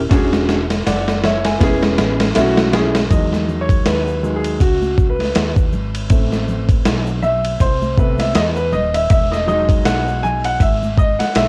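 A boxy, up-front grand piano carries this smooth, relaxed jazz-hop excerpt, taking a solo from 3.1 seconds to the close at 11.5 seconds over plate reverb. Before that, the gritty, compressed sampler-style drum kit opens with a fill, its thumpy kick, medium-tuned snare, hi-hat and ride cymbal sitting up front with the grain of cassette tape and the air of a large room. A dark, round fretless electric bass with a hollow-body punch anchors the low end, colored by transformer saturation and a subtle chorus. Soft-handed congas and a tube shaker stay close, dry and in the background. At a swung 80 BPM in E major, the harmony moves through rich chords such as E13, Amaj9/E and B7sus4 before settling between Emaj9 and Amadd9. The whole excerpt has the light reverb of a home cassette recording.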